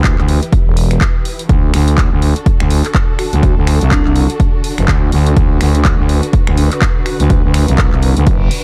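Bass house with a bouncy, gritty mood, swung on the sixteenths and set in a dark, digitally ambient production, cut from a longer piece. A growling, thick FM bass with overdrive sits up front beside a punchy, tape-warm electronic kick, both running throughout, the bass pumping with sidechain compression. A house drum kit of finger snaps, handclaps and warm hi-hats adds a layered, produced groove underneath. Behind them, a studio string section holds smooth, bowed chords with vibrato and portamento, roughened by vintage 12-bit sampler grit and breathing with sidechain pumping as the harmony moves from E minor to D. A metallic, ringing vibraphone played with medium mallets drifts in the background with short phrases at 3.2 and 7.1 seconds, its band-limited tone trailing dub echo. A reverse cymbal rushes in at 8.4 seconds to close the passage.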